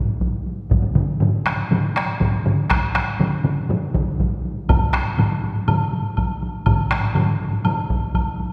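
A straight 4/4 pulse at 121 BPM drives this brief, ceremonial passage of Japanese traditional taiko drumming, cut from a longer piece. A solo taiko struck with heavy sticks and heard through a live room sits in the background from 0.1 seconds, while a second solo taiko, close and dry, sits up front from 0.2 seconds. Two taiko ensembles join at 0.7 seconds: one has a vintage, band-limited character up front, and the other carries the feel of a small room. A woody, closely heard woodblock enters at 4.7 seconds and joins the powerful drumming. The whole performance sits in a wet concert hall reverb with a 2.0-second decay, giving the ensemble a grand, resonant space.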